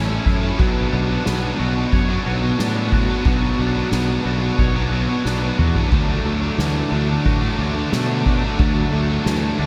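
A dreamy, reverb-soaked mix opens this soaring, euphoric post-rock excerpt at 90 BPM, moving from A to Bmadd9 and then Dadd9 at 5.9 seconds. Two bright, overdriven guitars play riffs, one cranked with lush chorus and one raw and set in the background with analog chorus, while a twangy, clean guitar plays arpeggios through analog chorus and delay behind them, over a growly, punchy fuzz bass. A very quiet, dark string section holds sustained chords with smooth, sul tasto bowing, and a soft-mallet drum kit with a boomy kick and dark cymbals enters at 0.3 seconds, playing a fill at 5.2 seconds.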